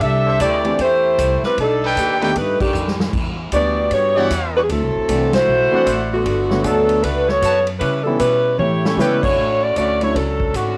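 A clear, close-miked saxophone section carries the melody up front with vibrato, its tone coloured by cassette tape, in this brassy, swinging big band jazz passage cut from a longer piece. Underneath, a woody pizzicato upright bass and a natural big-room drum kit with a punchy kick keep the swing moving, with drum fills and full-band accents punctuating the line. A present trumpet section with light vibrato adds stabs from 0.3 s, and a warm grand piano accompanies from 0.6 s, both also carrying the cassette tape colour, before the tune moves into a new section at 9.4 s.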